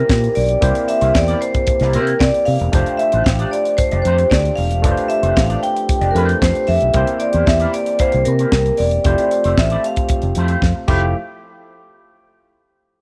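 Disco in a celebratory, joyful mood, cut from a longer piece: a ringing, metallic vibraphone carries the melody over a barky, lightly overdriven tine electric piano and a dark electric guitar through an envelope filter with wah and lush chorus, while a clear French horn section holds sustained chords in the background. Underneath, a round, punchy fingered electric bass and a tight funk drum kit with a high-tuned snare sit up front, with crash cymbal, hi-hat, kick and snare driving the groove in a light small-room reverb. The harmony moves from C7 through F69 and back to C7 before landing on Fmaj9, and a drum fill from 10.6 to 11.1 seconds closes the ensemble's run as the chords drop away.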